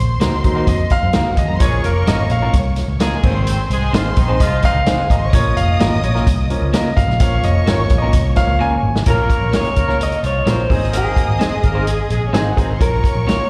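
Driving and urgent, this excerpt of uptempo 1960s-style soul moves at 129 BPM in a straight 4/4, set in Bb minor and cut from a longer piece, with chords shifting from Ebm through Bbm and Ab. A vintage drum kit with a punchy kick, medium-tuned snare and dark cymbals sits up front beside a round, foam-muted picked electric bass, while a clear grand piano carries a solo through the first 9.1 seconds as a lush, bowed violin section weaves a smooth second line. An electric guitar through a small old amp adds slightly broken-up, compressed stabs, and a tight horn section with vibrato and octave doubling joins in bursts from 1.6 seconds. After a drum fill, a second, lo-fi guitar takes up the melody from 9.1 seconds as the horns return. Slapback echo colours the violins, guitars, piano and horns, the horns also carry tape echo, and the whole mix sounds like a live gig heard through the venue's PA in a recital hall.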